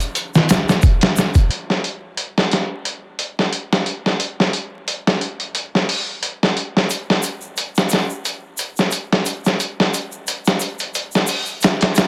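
This trip hop excerpt opens on a dusty, soul-flavoured sampled drum kit of kick, snare and hi-hat, with a close, dry egg shaker tucked in the background. At 89 BPM in 4/4 with a slight swing on the 16ths, the mood is hypnotic and dark. The drums sit up front, thick with 12-bit grit and overdrive: a thumpy kick, a medium-tuned snare with soft clipping, and a compressed, re-recorded small-room character. The shaker, with an acoustic, handclap-like tone, drops away at 1.5 seconds and returns at 6.9 seconds. Light reverb and vinyl crackle surround a dense, heavily limited modern master.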